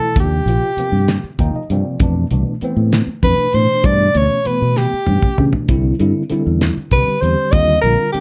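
A straight 6/8 groove drives this funky, bright slice of electric jazz fusion, with a damped, dry 70s drum kit, fat in the snare and tight in the kick, sitting up front alongside a fingered electric bass; both enter at 0.2 seconds. A soprano saxophone carries the melody in jazz style with vibrato and a soft subtone, trailed by slapback echo, while a worn, slightly out-of-tune tine electric piano, lightly overdriven and run through a phaser, supplies chords such as Ebmaj9, Fmaj7 and Gadd9 and adds a fill at 1.1 seconds. The drums take their own fill at 4.8 seconds, all set in light reverb within a dark, warm production.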